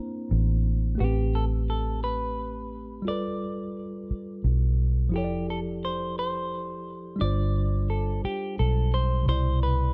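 Sensual and tender, this slow six-eight R&B excerpt at 58 BPM pairs a clean, hollow-bodied semi-hollow electric guitar melody with a worn, slightly out-of-tune tine electric piano, while a round, foam-muted vintage electric bass sits up front from 0.3 seconds, all wrapped in dark digital ambience as the chords move from Bbmaj9#11 through Am9, G9, Fmaj13 and G7sus4 to a closing Cmaj9.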